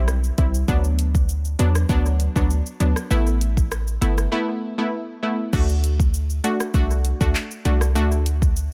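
An echo-heavy digital ambience surrounds this short dancehall excerpt, with every part sitting up front in the mix. A deep, boomy 808-style bass with a sine core, a noise layer and a fast, decaying attack anchors the low end in a straight 4/4 feel. The electronic afro-pop drum kit is polished and produced, pairing a deep kick and warm hi-hat with crash cymbal, handclaps, rim click and shaker. Over them, an analog pluck built from detuned sawtooth tones glows warm, round and bright, evolving through a filter sweep and a chorus effect as it outlines chords moving from C to D6 and Asus2. A break at 4.3 seconds leads into a new section at 5.5 seconds that settles on D. The overall mood is hypnotic and tough.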